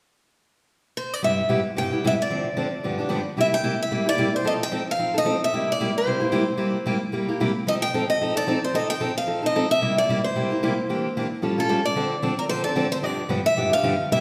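A steel-string acoustic guitar enters at 1.0 s with a picked melody, its boxy parlour-guitar tone full of finger squeak, and a second picked acoustic guitar joins at 1.2 s to accompany it in the lower register on freshly strung, concert-style strings. The piece is playful, charming jazz at a brisk 224 BPM in 4/4 with a light swing on the eighth notes, tuned slightly under standard pitch. It starts in C major over a Cmaj7/G, Dm7 and G7 turnaround, then at 3.4 s settles into a C mixolydian passage built on C7 and F7. That passage closes with Em7b5, Aaug7, Dm7 and G7 before the clip, cut from a longer piece, ends at 14.2 s. Both guitars sit up front and sound bright, surrounded by the lingering reverb of a recital hall or church.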